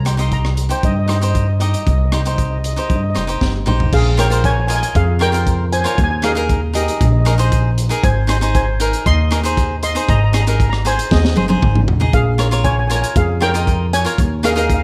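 Carefree and bouncy, this calypso excerpt moves in a straight four-beat feel. A mellow lead steel pan carries the melody, its shimmering, metallic tone struck with soft rubber sticks and heard close and dry. The upright bass sits up front with a woody, thumpy pizzicato sound, while a bright, crisp picked cavaquinho supplies the accompaniment. A crunchy breakbeat kit of kick, snare, rim click, hi-hat, toms and crash has a gritty, saturated character, with dark cymbals, a high-tuned snare and a rolled-off top, and it plays fills at 3.4 s and 11.1 s. The harmony opens on Cm, then from 3.9 s moves through Bbm7, Ebsus4 and Ab, returns to Bbm7 and arrives on Eb7sus4, all within a light reverb.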